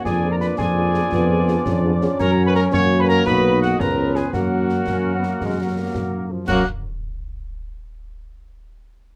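Military-style march for wind band in F# major at 112 BPM in a rousing, proud 6/8, where a distant, roomy cornet carries the melody over an up-front tuba bass, while a pure piccolo with vibrato, a warm, tight woodwind section and a softly vibrato euphonium add second lines, a smooth-topped French horn section and a clear trombone section's sustained chords sit in the background, and close, dry snare, bass drum and dark clash cymbals drive the short cut from a longer piece, moving from Fdim7 through F#, B and C#7 back to F#.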